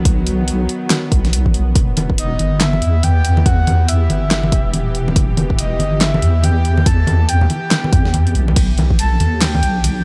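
Deep dubstep with a heavy, brooding half-time swing, cut from a longer piece, built on an up-front, dark, wobbling sine-and-triangle bass with chorus and a tense, string-like bowed drone with vibrato, joined by a tape-warm deep house kit with fat snare, handclaps, hi-hat and ride, a deep layered electronic kick, softly struck compressed congas from 2.0 s, and a breathy flute-like synth lead from 2.2 s wrapped in subtle chorus, cassette-tape grit and dub echo, all moving from B to E minor and back inside a digital ambience.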